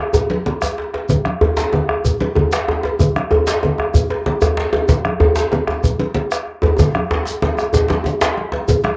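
West African traditional drum ensemble music in an earthy, driving 12/8 at 126 BPM, cut from a longer piece, where a round, up-front bombo and two tight, cracking djembes, distant and roomy though one sits forward, play alongside compressed, saturated congas with thick, damped skins, a grainy, mellow shekere and a metallic cowbell tucked in the background, with drum fills at 0.6 and 6.8 seconds, all captured as a home cassette recording in a small, wet booth.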